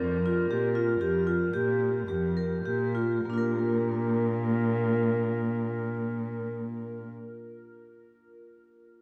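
A dark, distant solo clarinet opens this brief contemporary instrumental excerpt together with vibraphone and cello, all sounding from 0.0 seconds in a vast, echoing space drenched in wet, huge ambient reverb. The mood is shimmering and playful, in Bb major and an uneven 7/4 metre with a straight feel, the tempo moving between 96 and 124 BPM and slowing down over the first 3.3 seconds. Struck with hard mallets and its motor off, the vibraphone rings out metallic arpeggios from Bb3 to Bb4, up front with a boxy small-room character. A single bowed cello carries the bass between F2 and Bb2, its nasal, woody tone shaded with vibrato and portamento and also placed up front. The roomy clarinet, in a classical style, holds its melody on Bb4, while the harmony moves from Bb5 to Bb at 3.3 seconds before the passage closes just after 7 seconds.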